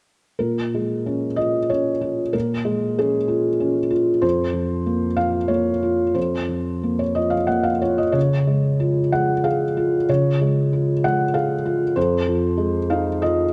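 Neoclassical minimalist piano in a reflective, wistful 3/4 with uneven, rubato beats, where a lone felt-muted upright sits up front, its thick felt giving a soft, mellow, intimate tone with audible action noise as it moves through Bbm7, Fsus4, Db and Fm7 from 0.4 to 13.5 seconds, framed by a moderate scoring-stage reverb in a dark production.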